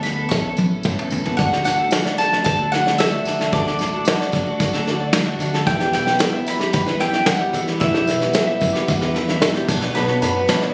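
A muffled, lo-fi vintage kit played with brushes sits up front in this nostalgic indie folk excerpt at 112 BPM in D major, opening with a fill from 0.3 to 1.4 seconds beneath a bright, woody mandolin melody, a shimmering twelve-string guitar, a thumpy pizzicato upright bass and a jingly, distant tambourine. At 1.4 seconds a very quiet felt-muted upright piano, with audible action noise, and a light fingerpicked ukulele join as the chords move from D through Em to Bm. A rich, nasal bowed cello with vibrato adds a second line at 10.0 seconds, all within a small room ambience and light reverb.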